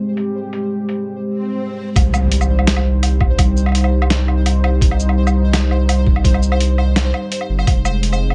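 A dry, dark sound with a dulled top end opens this tense yet spacious half-time drum and bass excerpt in C minor at 168 BPM, where a moody, detuned analog pad with sampler grit and sidechain pumping holds sustained chords over a faint pulsing, chorused gated texture, while a pitched-down, tape-warm boom bap kit of hi-hat, shaker, snare and woodblock enters at 0.2 seconds. A background swell rises into an electronic impact at 2.0 seconds, where the drop lands with a thick, saturated sine sub bass up front and a thumpy, gritty electronic kick, the harmony moving from F minor to C minor and back to F minor at 7.7 seconds.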